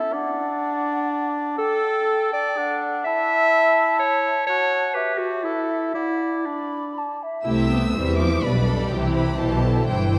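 Graceful and cheerful, this quick classical-period movement in triple time with a flexible, rubato pulse opens with woodwinds: a mellow, hollow flute, an oboe with light vibrato and a bright, punchy clarinet up front share the second line through the opening section. At 7.5 s the chamber strings take over, one violin section carrying an expressive, vibrato-rich melody above a focused second violin line, while smooth, even violas sit in the distance and a clear double bass up front joins a cello section in the background on the bass. A wet concert hall reverb gives the playing a spacious glow in this cut from a longer piece.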